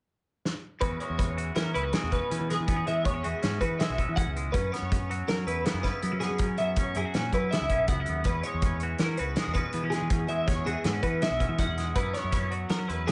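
Lightly reverberant and softly rolled off at the top, this wistful, bright math rock and midwest emo excerpt in 5/4 at 162 BPM opens with a drum fill at 0.4 s from a loose, roomy indie kit with a punchy kick, before the band enters at 0.8 s: a clean, twangy electric guitar with lush chorus and plate reverb picks out accompaniment, a bright twelve-string electric guitar spins high arpeggios through ensemble chorus, digital delay and plate reverb, and a growling overdriven picked bass anchors the low end, all circling between E69 and F#7sus4 in E major.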